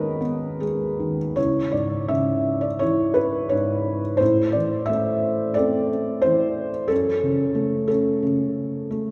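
A long, wet concert-hall reverb surrounds a felt-muted upright piano placed up front, its thick felt giving a soft, dark, intimate tone with audible action noise and a vintage character. This moody, bittersweet fragment of a lyrical classical solo piano piece unfolds with rubato in 4/4 at 73-92 BPM, set in C# phrygian and reaching from C#2 to E5. A brief opening on G#m gives way at 1.4 seconds to a longer passage moving through C#m, Am and F#m before the cut at 9.1 seconds.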